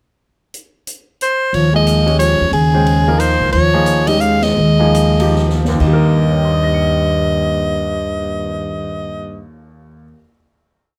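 Closely miked in a dry studio room, this short, complete modal jazz piece in Eb mixolydian has an open, searching mood, swinging in 3/4 at 126-181 BPM and slowing from 3.5 to 5.8 seconds, with a band accent at 4.4 seconds and a drum fill at 5.4 seconds, before a held final Eb chord at 5.8 seconds. Up front, a bright, punchy soprano saxophone with light vibrato states a motif-based melody of call phrases, while a mellow, smooth-topped trombone plays a harmony line mostly in sixths. Underneath, a woody pizzicato upright bass plays a two-feel line, a clear, polished upright piano adds syncopated comping in quartal voicings over an Eb9sus4 harmony, and an acoustic drum kit with dark cymbals, a medium-tuned snare and a boomy kick keeps a stick ride pattern from 0.5 seconds.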